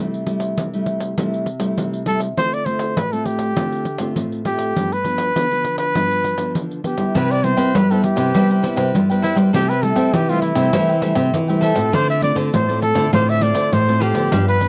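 A mellow, jazz-style solo trumpet with light vibrato and scooped notes carries the melody up front from 2.1 seconds in this lively, joyful samba and choro passage, cut from a longer piece. It is backed by a fingerpicked classical nylon-string guitar with fresh strings and a jingly pandeiro played with hard hands, and it moves through Am7/C, Dm7 and G7 to Cmaj7 before returning to Am7/C and Dm7. A crisp, picked cavaquinho joins in the background at 7.1 seconds, and a second fingerpicked nylon-string guitar adds a warm bass line from 7.2 seconds, all captured in a dry, close 1970s-style studio sound.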